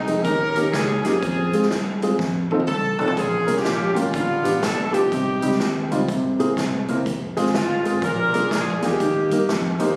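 Uptempo gospel at 124 BPM in a swung 4/4, uplifting and reverent, this short cut from a longer piece has a close-miked saxophone section and a solo trumpet with light vibrato and slapback echo carrying the melody together. An intimate grand piano with audible action noise supplies the accompaniment over a dark, round, amped fingered electric bass and a swinging big-band drum kit in a big room with a punchy kick, which plays a fill between 2.2 and 3.2 seconds. The chords move from Eb7 through Fm, Bbm and C7b13 to settle on Eb, and the whole is heard as a compressed phone recording in the room with light studio reverb.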